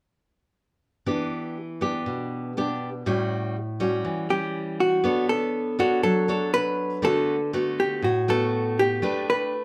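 A dark, clean, compressed hollow-body electric jazz guitar picks an up-front melody from 4.3 seconds over a full-bodied, fingerpicked nylon-string classical guitar with fresh strings and audible finger squeak, which opens this sunny, sophisticated bossa nova fragment at 1.1 seconds and moves through Em7, A6, Bm9 and D6 to A9sus4, all caught with light reverb as a band playing live in one room.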